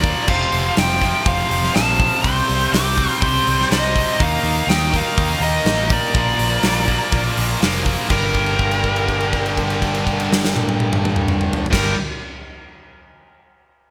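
A dark, smooth lead guitar carries the melody in this aggressive, heavy hard rock cut, its overdriven tone trailed by delay. Beneath it, an octave-fuzz lead guitar plays a second line, and a bright, punchy rock drum kit sits up front with a medium-tuned snare, crashes, hi-hat and toms ringing in a stone-room sound. Three picked, distorted rhythm guitars drive the riff from the background, one of them a double-tracked, high-gain part kept very quiet, while a fingered electric bass adds a growly, amped low end. At a straight 123 BPM in 4/4 and G minor, the harmony moves through F, Cm, Eb5 and Bb before landing on Gm as a second section opens at 8.1 seconds, where a held note stretches to 11.7 seconds. Moderate plate reverb and a bright 1980s-style digital production give the excerpt its polished, heavy sheen.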